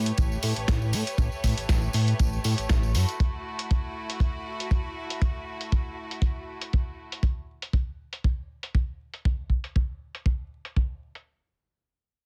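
A dry, tight kick sits up front in this groovy, sensual nu-disco excerpt, driving a 4/4 pulse at 119 BPM with a light 16th-note swing. A retro, glossy chorused synth bass is there from the very start, blending pulse-wave and sawtooth tones with ring modulation and a plucky filter, then drops out at 3.1 seconds. A clear, bowed studio string section holds sustained chords over A9 and then F#m7, its biting, intense ensemble tone softened by a smooth top and light vibrato, and it pumps with sidechain compression until it stops at 7.2 seconds. A gritty, compressed sampler-style kit adds filtered hi-hat and a medium-tuned snare, while a small-room tambourine stays in the background only briefly. The remaining drums carry on to 11.2 seconds under a dense, heavily limited modern master with studio reverb.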